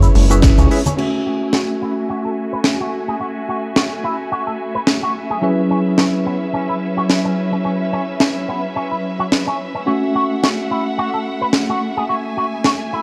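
A barky tine electric piano plays accompaniment through dub echo and sidechain pumping in this groovy, sleek nu-disco excerpt, joined by a dark, clean envelope-filtered guitar riff with lush chorus and a rich, bowed string section holding sustained chords through vintage 12-bit sampler grit. A glossy, nasal synth bass and a punchy electronic kick appear only in the opening moments, where a band accent lands at 0.4 s, while ringing congas sit in the background until 1.0 s and a tight funk kit with a high-tuned snare, hi-hat, shaker and crash cymbal runs nearly the whole way. From 1.0 s, filter sweeps move across the guitar and strings, and the mix sits in a warm production with an echo-chamber reverb.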